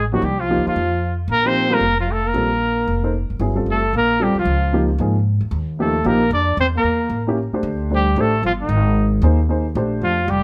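Closely miked with light reverb, this sophisticated, swinging jazz fragment features a vintage-toned trumpet with light vibrato, scooped notes and plate reverb on the melody, a soft-attacked trombone second line, woody pizzicato upright bass, and a slightly detuned upright piano whose audible action noise and long sustain give the accompaniment an intimate feel.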